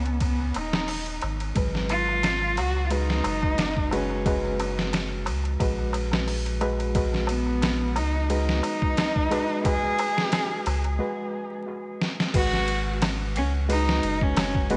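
A lightly swung 4/4 trip hop groove from a gritty, pitched-down sampler-style drum kit with a thumpy kick, a crisp metal-shell darbuka in the background and a deep, round dub sub bass carries this hypnotic, cinematic excerpt, where a dark, woody bowed cello with vibrato and dub echo sings the melody over a barky, reedy electric piano that enters at 1.6 s with tremolo and tape echo, until a break at 11.0 s and a drum fill at 12.0 s lead into a new section, all wrapped in vinyl crackle and a bright 1980s-style digital production.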